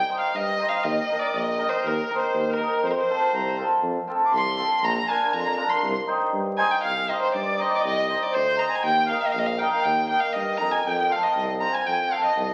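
This klezmer piece in two-four feels festive and soulful, and it is cut from a longer performance. A single bowed violin carries the melody up front with a warm, even tone and vibrato, taking a solo from the start through 6.8 seconds before the tune moves into a second section. Behind it, a reedy, dark accordion holds a smooth second line in the background, while an acoustic cimbalom sits up front with hammered, shimmering, ringing accompaniment. A mellow tuba plays the bass in a jazz style, its scooped notes sounding roomy and far off. The harmony circles through C minor, E-flat, F and B-flat. The whole recording has the sound of a very old 78 rpm record, with vinyl crackle, a dull top end and a wet large-studio reverb.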